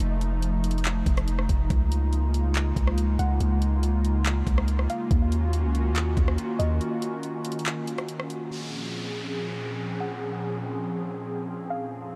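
Spacious and melancholic, this atmospheric cloud-rap excerpt moves at 141 BPM in a half-time feel in Bb minor, with a breathy, detuned pad holding sustained chords under chorus, sidechain pumping and a low-pass filter. A deep, sine-toned 808-style bass sits up front until 6.8 s beside a smooth, electronic R&B kit of knocking kick, tape-warm hi-hat, handclaps and rim click, while a soft, round pluck with chorus, filtering and analog delay drifts in the background from 3.2 s. An electronic downlifter enters at 8.5 s as the chords settle on Bbm7, and the dreamy mix is soaked in a huge ambient reverb.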